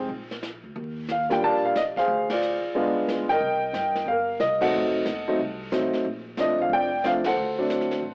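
Piano and pizzicato upright bass open this brisk, late-night jazz trio fragment together, with brushed drums joining at 0.1 seconds. The tempo is a swinging 182 BPM in 4/4, and the moody harmony moves from Bb through Ebmaj9, Dm7b5, G7b9, Cm7 and F7b9 before settling on Bbmaj7 and turning to D7. The upright piano carries the melody up front, its vintage, smooth tone rich with long sustain and a plate reverb halo. Beneath it, the bass sits low and woody with steel-string character, while the kit's dark cymbals, medium-tuned snare, boomy kick and hi-hat bear a cassette tape coloring. The trio hits shared accents at 2.3, 4.6 and 7.2 seconds. A moderate studio room, home-cassette grain, vinyl crackle and an AM radio tint give the whole passage, cut from a longer piece, a hazy, after-hours feel.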